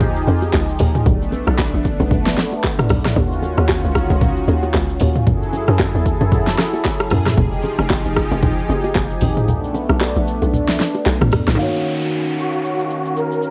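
Swung sixteenths at 114 BPM in 4/4 drive this late-night, hypnotic amapiano excerpt, cut from a longer piece, where a punchy, up-front deep house kit of kick, fat snare, handclaps, rim click, hi-hat, shaker and toms runs throughout, with the kick dropping out from 9.5 to 11.6 seconds. Underneath, a hollow, bouncy log drum bass with a fast attack and a noisy FM edge carries the low end until 11.6 seconds, while close acoustic congas and bongos sit in the background. A smooth, detuned sawtooth pad holds sustained chords across the whole clip, breathing with sidechain pumping and a moving notch, and the harmony cycles through minor ninth and seventh chords from Fm9 to Ebm9. At 11.6 seconds the groove is joined by a filter sweep, a faint electronic downlifter and an intimate, up-front baby grand piano with audible action noise and long sustain. A reedy, shimmering musette accordion, close-miked and dry, enters at 12.4 seconds with a brief melody. 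Cassette tape colouring and digital ambience give the whole a lo-fi, home-recorded haze.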